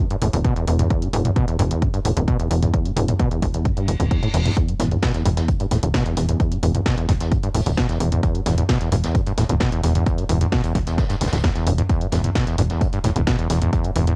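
A squelchy, gritty acid bass riff with a filter sweep opens this intense, driving excerpt of peak-time techno at 131 BPM in E minor, joined at once by punchy analog drum machine hats, snare and toms, a tight, nasal sequencer bass, and an overdriven, heavy electronic kick, the basses and drum machine pumping under sidechain and everything wrapped in a cassette-tape haze with light reverb, before a reverse cymbal at 3.9 seconds ushers in a very quiet brushed vintage kit at 4.6 seconds.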